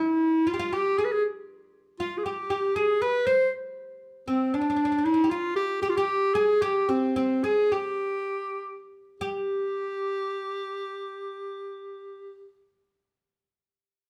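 Set in a wet, short studio reverb and heard from further back in the room, this passionate, festive fragment of Turkish makam ensemble music in G makam hicaz moves in a straight 9/8 at 189-236 eighth-note beats per minute, with an up-front, punchy, forceful clarinet carrying a jazz-style solo melody with light vibrato over a woody, deep, fretless oud, plectrum-plucked on double strings as a second line, the pace slowing from 4.8 to 9.2 seconds before a new passage begins.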